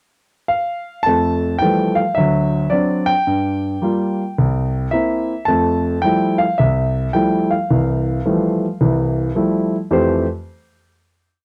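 Swung eighths at 108 BPM in 4/4 drive this short, playful jazz piece in F major, where a solo concert grand, warm and up front with a deep bass, opens at 0.5 s with a pickup before setting a motif-based melody over a stride accompaniment and close voicings through Fmaj9, D7, Gm7 and C7, closing on a final chord from 9.9 s, all captured in a dry, close 1970s-style studio sound with light reverb.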